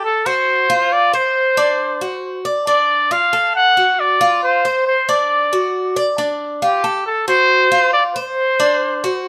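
A moderate large-studio reverb gives this short Latin recording an intimate yet open sound, with both instruments placed up front. At 137 BPM in a straight 4/4, the mood is sultry and danceable, a brief fragment cut from a longer piece. A breathy trumpet carries the melody between G4 and F#5 throughout its 9.3 seconds, its soft attack, vibrato and whispered, vintage pop-style tone making it the clear solo voice. Beneath it, a Cuban tres plays picked arpeggios from D4 to D5, its double strings ringing bright and metallic with some octave-doubled courses. The harmony moves through F, D7, Dm and D, with open fifths on F and G woven in, giving the passage a restless, shifting colour.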